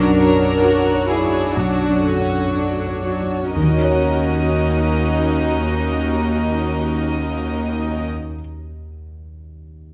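In a rubato 4/4 that slows down through the first 3.5 seconds before moving from Bmadd9 to Ebm7, this bittersweet, longing cinematic fragment from a longer piece sets a dark, floating sul tasto violin-section melody over a second violin line, a warm, vibrato-tinged viola section, a rich cello-section bass and a barely audible ringing concert harp in arpeggios, all around a soft, mellow felt-muted upright piano placed up front with its action noise audible, which carries on alone after 8.3 seconds until 9.9 seconds, captured by close, detailed microphones in light reverb.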